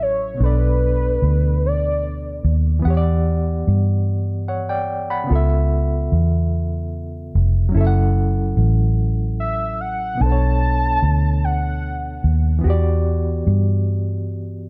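Slow R&B in a six-eight lilt at 49 BPM, this yearning, sultry passage sits in B minor and is cut from a longer piece. A barky, reedy electric piano carries the accompaniment throughout, lightly overdriven with a fast tremolo and a plate reverb that gives its bright tone some shimmer through its built-in speakers. Underneath, a dark, round fingered electric bass with a foam-muted vintage character sits up front and sets the low end from start to finish. A velvety synth lead, built from sawtooth and triangle tones in unison with chorus, vibrato and portamento, sings the melody only in two brief phrases, from 0.0 to 2.6 seconds and again from 9.4 to 12.3 seconds. The harmony moves through Bm7, Em7, C#7alt and F#m7 before returning to Bm9 and Em7, all within a lightly reverberant room.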